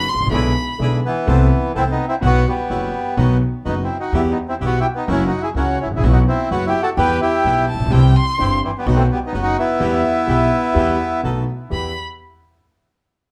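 Heard from further back in a wet club, this dramatic, sultry rubato tango excerpt sets a reedy, airy bandoneon melody with tape echo up front over a dark bandoneon in the background playing stabs, a woody, thumpy pizzicato upright bass on gut strings, and an intimate, vintage concert grand piano whose deep bass and audible action noise give the accompaniment a smooth glow, while an expressive bowed violin with vibrato and portamento slips in briefly at 0.0, 7.7 and 11.7 seconds.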